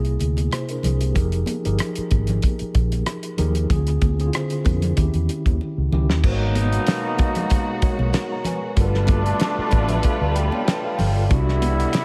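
This 12-second excerpt of lush 1970s-style soul opens with a mellow tine electric piano, a round, foam-muted fingered bass and a damped drum kit with a fat snare and dark cymbals, while bright, high-tuned congas sit in the background from 0.2 seconds, all moving at 95 BPM with a light sixteenth-note swing through rich chords from C7b13 to Eb7b9. After a drum fill, at 6.2 seconds a distant, expressive string section with vibrato and portamento arrives alongside punchy, tight trombone stabs as the harmony shifts to Abm11 and G9. An electric piano fill from 9.4 seconds leads to a closing Cmaj9#11, giving the bittersweet, smooth groove a small-room glow.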